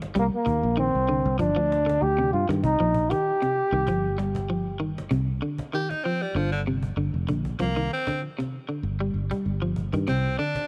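Afrobeat with a hypnotic, driving pulse and a light swing, cut from a longer piece and captured as a home recording on cassette in a small room. A twangy, slightly broken-up electric guitar picks arpeggios through an analog delay, while a fingered electric bass sits up front with a dark, round, foam-muted tone and a woody cajon with faint snares keeps time in the small room. A trombone carries the opening melody from 0.2 seconds, sounding distant and roomy with a light vibrato. From 5.7 seconds a raspy tenor saxophone takes over as soloist, gritty, punchy and forceful with an edgy vibrato. The minor-key harmony moves between C minor and G chords before settling on Csus2, and the cassette tape colours the cajon and both horns.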